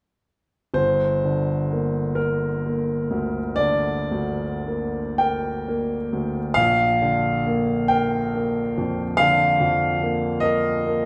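Classical romantic nocturne for solo piano in G minor, wistful and mournful, unfolding in a slow, rubato 12/8 at 35-49 BPM in dotted quarters, where a clear, natural grand piano with long sustain sits up front from 0.7 to 11.1 s, ranging from G1 to G5 and moving from G minor to B-flat at 6.6 s, all bathed in a wet recital-hall reverb within a dark, warm production, cut from a longer piece.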